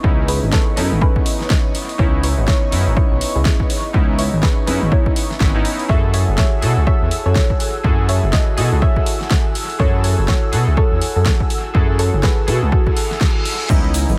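Moody and hypnotic, this deep house excerpt rides a swung 4/4 groove that moves from C#m9 to F#m9 at 5.9 seconds. A punchy, overdriven electronic kick sits up front beside a smooth, gliding synth bass, saturated and wave-folded with vibrato and portamento, pumping against the beat. Vintage analog keys play warbling, detuned stabs with a filter sweep and analog delay, while an airy, breathy pad holds sustained chords in the background through chorus and phaser. A soft, round pluck carries the dark, gentle melody, touched by subtle chorus and tape echo, and the deep house kit adds crash, hi-hat and a fat snare, overdriven and thrown into dub echo. The mix is dry on reverb yet heavy with echo, and near the end an electronic reverse cymbal rises from 12.9 seconds before ringing congas and a grainy, distant tube shaker slip in at 13.7 seconds.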